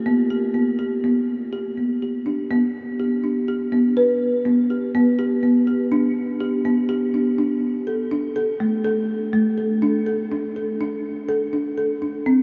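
A vast, echoing space surrounds this recording, with a long, wet ambient reverb trailing behind every note, while a small room ambience sits underneath. This is a short cut from a longer contemporary instrumental piece, pensive and restless in mood, moving at 123 BPM in an unsettled 5/4 metre with a straight feel, and tuned slightly below standard pitch. A folk marimba played with soft mallets is the only instrument, entering at 0.1 seconds and carrying the whole passage alone until 12.4 seconds. Its hardwood bars give a woody, rustic, round tone that stays mellow and up front, moving between A3 and B4. The piece shifts into a new section at 2.5 seconds, and the marimba's dry, up-front character set against the enormous reverberant space gives the passage its pensive, restless atmosphere.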